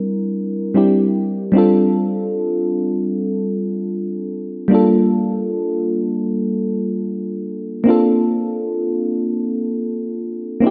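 A moody, late-night R&B fragment drifts along at 76 BPM in a straight 4/4, cut from a longer piece. A lone mellow FM electric piano carries the whole 10.7 seconds, sitting up front and ranging from G3 to Bb4. Its tone is soft and round with a vintage warble from the chorus, a fast attack that decays, a dark color, and a noise layer. The harmony moves from C9 to F6 at 1.6 seconds, then to Gm9 and Bbmaj9. Light reverb gives the sound a gentle sense of space.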